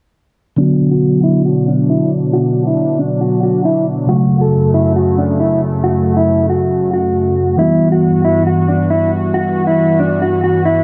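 Dark production with light reverb and a digital ambience frames this brooding half-time hip hop excerpt in B minor at 137 BPM, tuned to A4 = 436 Hz, with a filter sweep running from 0.6 to 10.8 seconds. An up-front, clean, compressed electric guitar carries the fingered melody, while a mellow tine electric piano, heard as if through built-in speakers, supplies the accompaniment, both low-pass filtered. A smooth, warbling vintage analog pad of detuned sawtooth tones sits up front with chorus and a slow attack, holding sustained chords that move through Bm, F#m and Emadd9.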